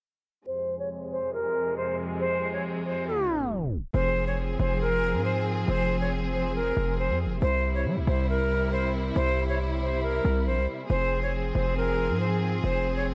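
A half-time drill groove in 4/4 sets an ominous, tense mood in this hip hop excerpt, cut from a longer piece. From 0.5 s, an airy, close-miked concert flute carries an expressive, vibrato-laced melody through a low-pass filter and a diffuse ambient delay. Beneath it, a muted string section, bowed con sordino, holds dark, veiled sustained chords, also low-passed, moving from F minor to C and back to F minor. A filter sweep opens the track, and a tape stop leads into the entry of a punchy, heavy 808-style bass at 3.9 s, its sine tone layered with noise and decaying after a fast attack. Lush hall reverb soaks the mix in a dreamy haze, while the flute, strings and bass all sit up front.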